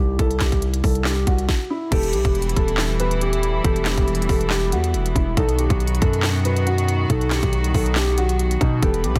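A dense, heavily limited and nearly dry mix carries this melancholic, menacing half-time trap passage in E harmonic minor at 139 BPM, where a dark, boxy grand piano melody with tape echo floats over muted felt-like synth keys in the background and a distorted, aggressive 808-style bass, while an up-front trap kit with hard-clipped kick, sharp snare, crisp hats, handclaps and crash enters at 0.2 seconds, a brief stop falls at 1.5 seconds, and a reedy, gut-string studio string section joins with sustained chords at 1.9 seconds as the harmony moves from C to Em and then B.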